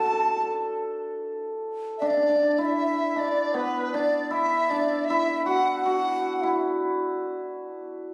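Captured on a phone in a wet recital hall with a 1.5-second reverb tail, this short festive, pastoral cut from a longer Chinese chamber piece in D gong mode moves with a rubato feel at roughly 75-81 BPM in 4/4. A reedy large dizi with a buzzing membrane carries the melody from a distance, its vibrato and soft attack set against a breathy, tongued xiao that sits in the background as a second line, both stopping at 6.6 seconds. Up front, a hammered dulcimer plays its own shimmering, ringing second line in a lower register and rings on alone until 8.1 seconds.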